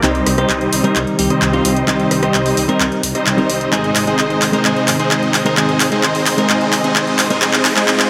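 Festival progressive house in C minor at 130 BPM, this emotional, powerful build-up moves from Cm to Ab to Fm, with a huge, euphoric supersaw lead carrying an up-front riff through a low-pass filter sweep and tape echo over a layered, overdriven big-room drum kit whose fill of handclaps, hi-hat and rim click runs the whole way through. Beneath them a thick, menacing detuned saw bass sustains with beating saturation, while a lush unison pad sits in the background with chorus, phaser and its own filter sweep, joined by a clean, picked electric guitar washed in tape echo. A very quiet riser enters at 6.4 seconds, and a moderate hall reverb wraps the whole mix in space.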